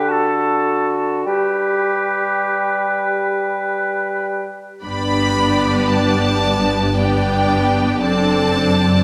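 In a rubato triple metre, this elegiac, melancholic slow movement for symphony orchestra, cut from a longer piece, opens on woodwinds alone: a pure, straight-toned flute, a bright, soft-edged clarinet and a warm oboe with vibrato over a mellow, distant bassoon, moving from D to G. At 4.8 s the strings take over, with a rich, up-front violin section carrying the melody and a smooth second violin line above lush violas, expressive cellos and double basses. Dark French horns sustain chords in the background of a reverberant concert hall, turning to D7/F# near the close.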